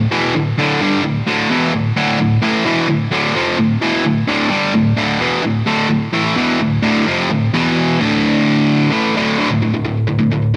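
A bright, overdriven electric guitar, picked and double-tracked, sits up front and plays alone throughout this aggressive, dark metal excerpt in D minor at 129 BPM, its tone coloured by cassette tape grain and tape echo. It holds to D5 power chords, moving briefly to E5 at 7.5 seconds before returning to D5, and drops into a half-time feel at 9.4 seconds for the final stretch. Light reverb and the lo-fi character of a home cassette recording give the sound a raw, homemade edge.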